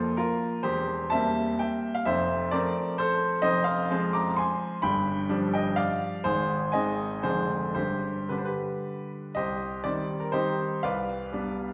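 Dotted rhythms drive this triple-time classical dance, and the pulse bends freely with romantic rubato, giving it a rustic, proud character. A bright grand piano plays alone throughout the 11.7-second fragment, reaching from deep bass notes at E1 up to D6. Its tone is brilliant and open, with long sustain, and it sits up front in the sound. Around it, a wet recital hall reverb blooms, and the listener seems placed further back in the room. The harmony darkens partway through, and a new passage begins at 9.4 s before the fragment breaks off.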